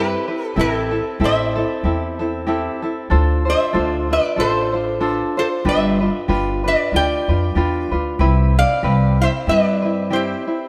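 A nasal, metallic lap resonator guitar played with slide and fingerpicks carries the melody from the start of this languid, sunny Hawaiian piece at 94 BPM in a swung 4/4, over a light, fingerpicked tenor ukulele and a woody, thumpy pizzicato upright bass on gut strings, all three up front yet heard from further back in the room through a wet plate reverb, moving through Cmaj7, Am7, Dm7 and G7 back to Cmaj7 before the bass stops at 10.3 seconds in this passage cut from a longer piece.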